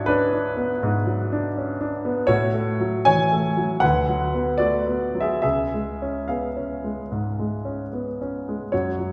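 Stormy and brooding, this short cut from a longer romantic character piece for solo grand piano moves in 4/4 with a free, rubato feel, its harmony moving from G#m7b5 through F#m/A and Bm/D before arriving on C# at 5.4 seconds. The piano sounds present and up front with a short sustain, ranging from C#2 to G#5, while a wet scoring-stage reverb of 1.8 seconds gives the room the sense of being heard from further back.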